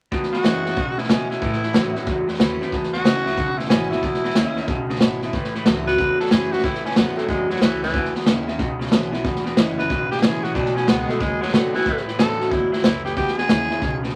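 A growling tenor saxophone carries the melody up front in this upbeat, rollicking rockabilly excerpt, its raspy, gritty tone shaded with vibrato, while a twangy, slightly broken-up electric guitar through a small old amp plays a riff at a swinging 184 BPM in E major. A full-bodied steel-string acoustic guitar picks the accompaniment with audible finger squeak, a woody pizzicato upright bass thumps in the background, and a punchy vintage drum kit with a rolled-off top drives hi-hat, kick and snare from the front. The chords move through E6, A6 and B6, set in a moderate club reverb with vinyl crackle across the 14-second cut.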